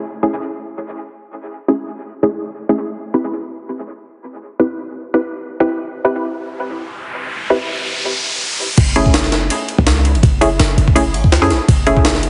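Driving at 165 BPM in 4/4 with a light swing on the sixteenths, this dark, raw drum and bass cut opens on filtered dub chord stabs alone, muted sawtooth hits with a quick pluck and short decay, thickened by chorus and trailed by dub echo, moving from Amaj7 to Cmaj7. An electronic riser pushes to the front from 6.5 s, building the tension toward the drop. At 8.8 s the breakbeat sampler-style kit crashes in, gritty, pitched up and compressed, with a thumpy kick, a high-tuned snare, hi-hat, ride and crash, sounding as if re-recorded in a large room and sitting up front. Alongside it a deep, boomy 808-style bass enters with a sine tone, a noise layer, a fast attack and a decaying tail, as the harmony settles on F#m9. The whole fragment sits in a moderate echo-chamber reverb and carries a squashed, radio-like character with the top end rolled off, and it is cut from a longer piece.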